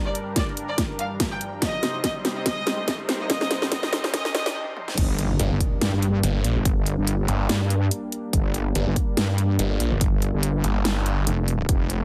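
Swung sixteenths in a half-time groove drive this heavy, aggressive wobble dubstep excerpt, cut from a longer piece, with a punchy electronic kick and a layered dubstep kit whose huge snare, hi-hat, toms and crash sit up front. The opening build-up pairs a lush, warbling pad of vintage, detuned saw chords, held in the background with chorus and sidechain pumping, with a rich, distant violin section that carries the melody with vibrato through a low-pass filter and dub echo until 4.5 seconds. A very quiet electronic riser and impact enters at 0.7 seconds and carries on into the drop, and the build moves from G minor to C minor under a drum fill before a short break. At 5.0 seconds the drop lands on G minor, and a heavy, mellow wobble bass with chorus and overdrive surges forward. At 5.4 seconds it is joined by a growling, bright saw bass whose distortion and moving notch give it a snarl. 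The mix is dry and close, with the drums and both basses dominating the pad and effects.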